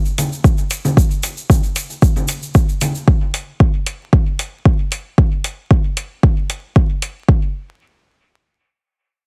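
The tube shaker is heard first, grainy and bright, close and dry, before the congas, electronic hi-hat and deep electronic kick drum join almost at once in this cavernous, hazy dub techno excerpt at 114 BPM in a straight 4/4. The layered congas carry a dub echo and sidechain pumping, while the overdriven kick and hi-hat sit up front, re-recorded in a small room. The shaker and congas drop out near 3 seconds, the kick and hi-hat carry on until around 7 seconds, and the whole is squeezed into a heavily compressed radio sound with vinyl crackle and little reverb.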